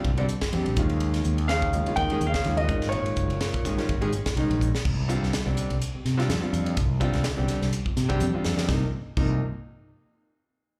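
A clear, polished baby grand piano carries the melody from 1.5 to 4.3 seconds, joined by a breathy, whispered tenor saxophone with scooped notes and vibrato, both touched by slapback echo. Underneath, this funky, slick electric jazz fusion moves at 125 BPM in 4/4 with a 16th-note swing in C phrygian, tuned to A4 = 435 Hz. A vintage, up-front grand piano with its own slapback echo comps through chords from C9sus4 to Cm over a punchy fretless electric bass and a crisp fusion kit with a high-tuned snare and tight kick, which adds a drum fill at 4.6 seconds, all set in a club-like reverb, as if heard through a venue's PA.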